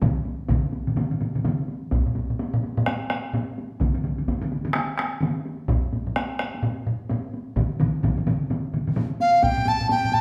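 Heard in a large, wet studio reverb with a 1.1-second decay, this live-in-one-room recording is a short cut from a longer Japanese traditional taiko ensemble piece, powerful and driving at 128 BPM in 4/4 with a swung sixteenth-note feel. Two solo taiko drum parts play from the start: one struck with heavy sticks and carrying a vintage, band-limited tone, the other hit with hard sticks and placed up front in a small-room sound. Two taiko ensemble parts pound alongside them, one with hard sticks in that same small-room space, the other with heavy sticks and close-miked. The first ensemble part drops out at 9.1 seconds, and at 9.2 seconds a large bamboo dizi enters on melody, moving between F5 and A5. Its reedy, buzzing-membrane voice is pure and crisp in attack, with audible chiff and vibrato, and it sits prominently over the drums.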